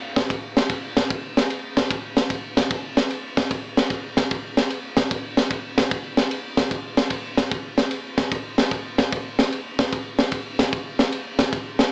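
Gospel drum excerpt at 150 BPM in 4/4 with a swung eighth-note feel, carrying a reverent, soulful mood. A crisp fusion kit sits up front from 0.2 seconds, with a punchy kick, high-tuned snare and ride cymbal in a small, pumping room. The sound is compact, with modest booth ambience and a small-speaker character.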